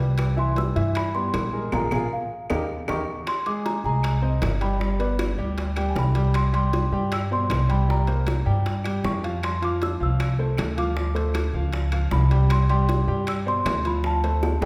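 Sunny and sophisticated, this short Afro-Cuban jazz passage is cut from a longer piece and moves with a straight four-beat feel. A delicate, bell-like celesta carries the melody from 0.4 seconds, its sweet, close-miked tone sitting high above a clear concert grand piano that fills in the harmony with natural, deep-bottomed chords. A dark, thumpy upright bass with gut strings is played pizzicato and sits up front, while round, low-tuned bongos struck with hard hands, ringing metal-shell timbales and woody claves in the background drive the percussion from 0.2 seconds. Early on the band hits an accent as a drum fill leads into the second section at 3.3 seconds, where the harmony drifts through rich major and suspended chords before a chromatic turn near the end. The whole ensemble sits in a wet recital hall reverb that gives the sound the airy spaciousness of a church or concert hall.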